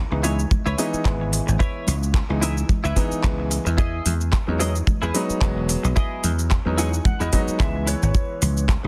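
A tight, up-front kick drives this cosmic, groovy nu-disco excerpt at 110 BPM in C# minor, with a gentle 16th-note swing, while a bright, foam-muted thumbed slap bass pumps beneath it. Crisp electronic hi-hats, handclaps and shaker from a layered pop kit mix with very quiet hard-handed congas, and a clear, short-sustain baby grand piano with tape echo comps through C#m7 and Emaj7. A twangy, scooped clean electric guitar plays a picked riff drenched in lush chorus and tape echo, adding a fill from 6.5 to 8.1 seconds, all sealed in a dense, heavily limited modern master with light studio reverb.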